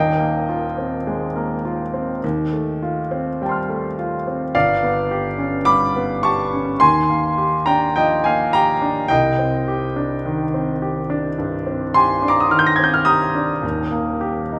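Impressionist classical solo piano, luminous and hazy, drifts in free rubato through lush extended harmonies, its clear, intimate grand piano sitting up front with long sustain and audible action noise inside a wet recital hall, in a brief fragment cut from a longer piece that settles onto a simple resolving chord at 13.6 seconds.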